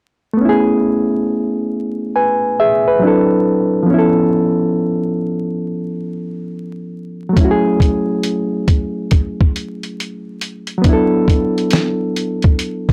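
Swung sixteenths at a relaxed 69 BPM in 4/4 give this short lo-fi hip hop excerpt in A major an easy, unhurried sway, and the mood is cosy and mellow. A reedy, barky electric piano carries the accompaniment from 0.3 seconds, sounding bright and clean through its built-in speakers, sitting up front and coloured by a cassette tape effect. It moves through Amaj9, D9 and C#7alt before settling on F#m7 and E9sus4. At 7.4 seconds a dusty soul sampler-style drum kit joins with hi-hat, a thumpy kick and a fat snare, compressed and gritty and also placed up front. The recording is dry and hardware-rough with a touch of light reverb and a bed of vinyl crackle, and both parts play through to the cut at 12.9 seconds.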